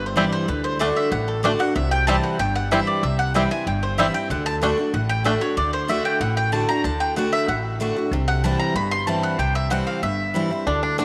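A straight, driving 4/4 bluegrass groove with a rustic feel: a thumpy pizzicato upright bass and a bright, full-bodied dreadnought guitar with audible finger squeak support an up-front, woody mandolin soloing in double-string stabs throughout, while a twangy, percussive fingerpicked banjo carries the melody until 5.3 seconds and returns at 10.7 seconds, the chords moving between D and C under a moderate plate reverb.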